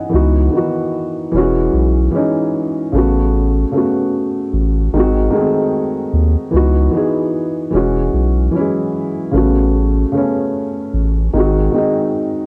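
Melancholic and reflective, this short lo-fi hip hop cut from a longer piece sets a swung groove in which a felt-muted upright piano, dark, boxy and intimate behind a low-pass filter and cassette tape coloring, cycles through C#m11, E69, A69 and G#7 chords over a thick, saturated sub bass with a fast attack, both parts sitting up front in a small, lightly reverberant room with the hazy character of a home cassette recording.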